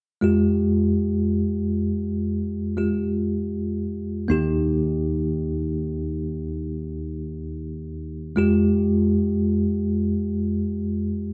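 A bell-like tine electric piano opens at 0.2 seconds, its bright, clean tone sitting direct and up front as it carries the accompaniment across a range of Eb2 to G4. This short pop passage, cut from a longer piece, moves at a slow 59 BPM in a straight 4/4, and its F minor colouring gives it an emotional, melancholic mood. The harmony rests on Fmadd9, shifts to Eb at 4.3 seconds, then returns to Fmadd9 before the piano stops at 11.3 seconds. A wet stone room reverb with a one-second tail surrounds the playing, giving the feel of a band performing live in a single room.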